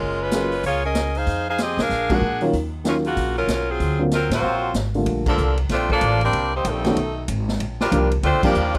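A dry fragment of sultry big band swing, where an edgy, up-front saxophone section carries the melody over a woody, growly pizzicato upright bass, a mellow baby grand piano and a distant, roomy drum kit with dark cymbals and a boomy kick, while a nasal, straight-muted trombone section adds a second line from 4.3 s and the whole band punches accents until the piece is cut off at 8.8 s.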